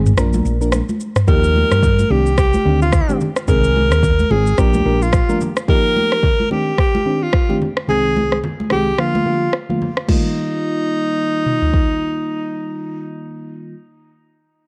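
A sunny, joyful afrobeats fragment in Eb major at 109 BPM with swung 16ths opens on a mellow, chorused FM electric piano and a round, punchy hollow-body bass, joined by an electronic drum kit with a deep kick up front and ringing congas in the background during a short break. At 1.3 seconds a breathy, close-miked alto saxophone takes the melody with analog delay, whispered and intimate over chords cycling through Ebadd9, Cmadd9, Ab/C and Bb, while the bass stops at 5.2 seconds. A dry, gritty cassette-tape sound with digital ambience frames the whole recording.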